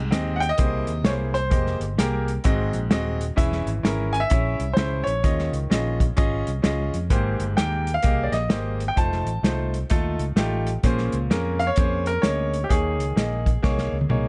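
A dark, smooth acoustic drum kit sits up front in this uplifting, soulful slice of uptempo gospel, with a tight kick and a medium-tuned snare working alongside hi-hat and toms in a swung 4/4. A bright, brilliant grand piano carries the melody from 0.4 seconds, sounding natural and placed close to the listener. Beneath it, a clear baby grand piano plays the accompaniment with an intimate feel, long sustain and audible action noise. A warm, amped fingered electric bass holds down the low end. The harmony moves through rich chords such as Abmaj7, Fm11, Eb9sus4 and Bbm9, and a drum fill at 13.6 seconds closes this passage, which is cut from a longer piece. The whole sits in a small room with a mellow, rounded production that keeps the top end soft.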